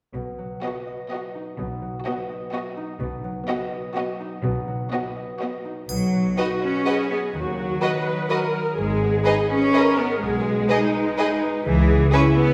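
Up front and clear, a bowed cello section carries the bass line with smooth vibrato through this playful, whimsical film cue in B major, moving at 125 BPM in a straight 3/4 that feels magical and mischievous. A mellow, ringing concert harp spins fingerpicked arpeggios above a double bass section, while violins enter at 0.6 s with a distant, focused melody, a second violin line adds lush intensity, and a dark viola section colours the accompaniment with expressive portamento. A bright triangle sounds briefly at 5.9 s as the second section begins, with the harmony turning from B toward G#m and C#m7, and the wet scoring-stage reverb sets the recording further back in the room in this fragment cut from a longer piece.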